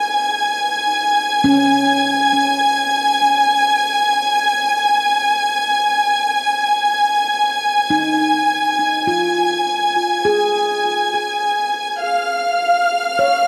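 A lush, bowed studio violin section sits up front, holding a smooth, even texture high above with vibrato across this luminous, serene ambient passage at a slow 51 BPM in 4/4, tuned to A4 = 441 Hz. Beneath it, a mellow nitrided-steel handpan rings out soft fingertip arpeggios through a dub echo, fading out over the first 12.0 seconds. A wet spring reverb gives the whole mix a heavy echoing bloom as the harmony drifts from a rootless B6 to C#, and a new section begins at 12.0 seconds in this fragment of a longer piece.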